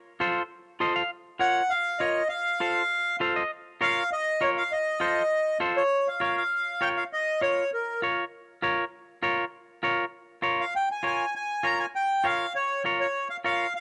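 A dry, close 1970s-style studio sound with light small-room reverb frames this fiery, passionate Latin excerpt at a brisk 199 BPM in straight 4/4, where a bright, twangy clean electric guitar accompanies up front and adds short picked fills at 0.7 and 3.1 seconds over chords swinging between F and B-flat minor, while a reedy, airy accordion carries the melody from 1.4 seconds as the music settles into B-flat dorian at 5.9 seconds, then pauses and returns at 10.6 seconds.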